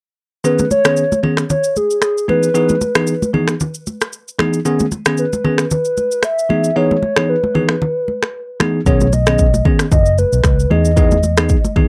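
A lightly swung 16th-note groove at 114 BPM drives this sunny, joyful afrobeats fragment in B major. Snaps, rim clicks and shaker from the up-front, tape-warm electronic kit ride alongside close, dry congas with a bright thin skin, while a bell-like tine electric piano sparkles over an alternating B69 and Emaj7 progression. A hollow, woody clarinet-like synth lead with chorus, vibrato and analog delay carries the melody, and at 8.9 seconds the deep kick arrives together with a dark, round, punchy muted electric bass, all captured in a dry, gritty cassette sound.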